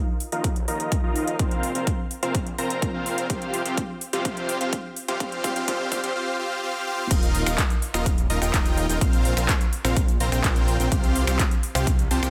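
Set in a light digital ambience with a touch of reverb, this clip from a festival progressive house track moves at 126 BPM in a straight 4/4 with a euphoric, uplifting mood. A huge, thick supersaw riff sits up front, its detuned unison sawtooth stack reinforced by a sub octave, compressed and sustained with a hint of vibrato, pumping against the kick and trailing tape echo. Through the build-up, a low-pass filter sweeps across the supersaw over an Ebsus2, Bbsus2 and Fsus2/C progression. Beneath it, a lush, saturated saw bass with chorus stays in the background, its detuned layers pumping in time. A punchy, layered electronic kick leads the rhythm, joined by a produced dance kit of metallic hi-hats, handclaps, finger snaps, shaker and crash cymbal, which plays a fill from 3.3 to 6.2 seconds before the drop lands at 7.1 seconds.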